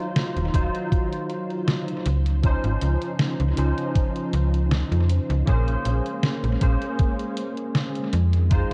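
A snappy, metallic slap-like FM bass sits up front with tube saturation, entering at 0.4 seconds and anchoring this nostalgic, woozy vaporwave excerpt at 79 BPM in 4/4 with a light swing on the sixteenths. A barky tine electric piano plays bright, clean accompaniment from the start, treated with ensemble chorus and dub echo, while a silky string machine holds sustained chords in the background, its vintage, warbling tone softened by chorus and a slow attack with a long release. A detuned 8-bit digital drum machine supplies hi-hat and a medium-tuned snare with 12-bit sampler grit and dub echo, joined at 0.5 seconds by a thumpy, tape-flavoured electronic kick drum. The harmony moves through Ebm69, Dbmaj9, Bbm9 and Fm7 in E-flat dorian, tuned slightly flat of standard pitch. The echo-heavy mix carries light reverb and a cassette-tape character that deepens its hazy, drifting feel.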